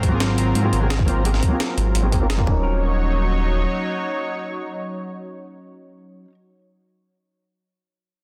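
Dreamy and rolling, this short cut of liquid drum and bass at 172 BPM in Eb dorian moves from an Ab13 chord to Ebm7 at 2.5 seconds. A lush, warbling vintage pad with chorus and sidechain pumping holds sustained chords beneath a smooth, detuned sawtooth-and-square synth bass sitting up front, while a tight, layered electronic kick and a gritty sampler-style breakbeat kit with a high-tuned snare and hi-hat drop out before 2.6 seconds. A dark, clean hollow-body jazz guitar plays fingered accompaniment through a low-pass filter and dub echo, with a filter sweep over its opening, all set in light digital ambience within a dense, heavily limited modern master.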